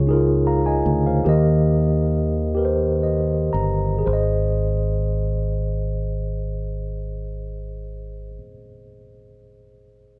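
Soulful and jubilant, this slow gospel fragment in 6/8 moves at 37-53 BPM in Ab major, slowing down through its opening as the harmony passes from Db to Eb before settling on Ab at 4.1 seconds. A mellow, clean tine electric piano carries the accompaniment through its built-in speakers, adding a fill from 2.6 seconds, while a round, amped fingered electric bass sits up front and stops at 8.4 seconds. The dry, close sound of a 1970s-style studio carries a light reverb.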